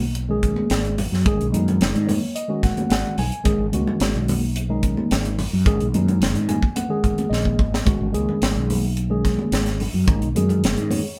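Electric jazz fusion at 109 BPM in G# minor, funky and nocturnal, cut from a longer piece and resting on a G#m7 chord, with an up-front, clean tine electric piano heard through its built-in speakers adding fills from 1.8 s, a dark, round fretless bass, a crisp fusion drum kit with a punchy kick and high-tuned snare that takes a fill at 7.3 s, and bright, hard-handed congas tucked in the background, the band captured live together in a small room with moderate reverb.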